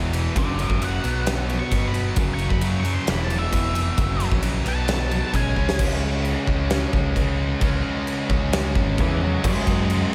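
Brooding and angsty, this quiet-loud alternative rock excerpt in a straight 4/4 is driven by a huge arena drum kit with a fat snare and punchy kick, up front in a big room, alongside a growly overdriven picked bass, a bright high-gain guitar riffing in the background and a warm overdriven guitar riff, both guitars touched with slapback echo. A dark octave-fuzz lead guitar carries a solo from 0.4 seconds through a drum fill at 5.6 seconds, stopping at 5.8 seconds and returning at 9.0 seconds, while a very quiet double-tracked high-gain guitar slips in at 9.4 seconds. The chords move through F#m, B5, F#5, E5 and C#5 under light reverb and studio ambience.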